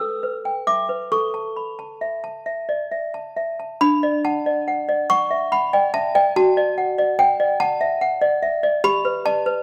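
A lone toy piano opens this short classical lullaby, its clanky, bell-like tone carrying the audible knock of wooden hammers and a charming, slightly out-of-tune quality. The mood is tender and innocent, moving in a gentle 6/8 at roughly 44-49 beats per minute with a freely breathing rubato. In D major, with tuning set to A4 = 443 Hz, the harmony begins on E minor and turns to A before settling onto D at 3.8 s, where a second section begins. From there the chords move to D over F sharp and then to G near 8.8 s, with the melody ranging from D4 up to E6. Close, detailed microphones place the instrument up front in a light reverb, and the passage is cut from a longer piece, stopping at 9.6 s.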